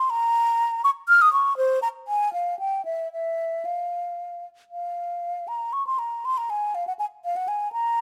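A mellow concert flute plays alone and up front in this short baroque-style classical fantasia, its hollow, airy tone caught in close detail. The mood is grave yet flowing, with a rubato feel in 3/4 at roughly 110-124 BPM. The line moves between C5 and F6, shaped by tongued notes and vibrato. It opens in F minor and turns to B-flat minor at 4.7 seconds, where the opening idea begins again. A light reverb surrounds the instrument through this brief excerpt, which is cut from a longer piece.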